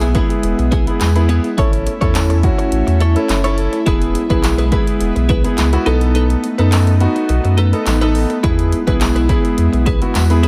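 Carefree and upbeat, this dance-pop excerpt moves at 105 BPM in E major, with a punchy analog drum machine of handclaps, hi-hat, kick and snare set up front, and a deep, saturated sub bass whose sidechain pumping it shares with the clear concert grand piano and the airy, breathy pad of sustained chords sitting softly in the background. A bright, direct-recorded clean electric guitar picks a compressed riff with subtle chorus, while a jingly tambourine enters at 1.0 seconds behind the mix. The kick drops out from 6.2 to 8.4 seconds as the harmony moves through E, A and B7 before resolving back to E under light reverb.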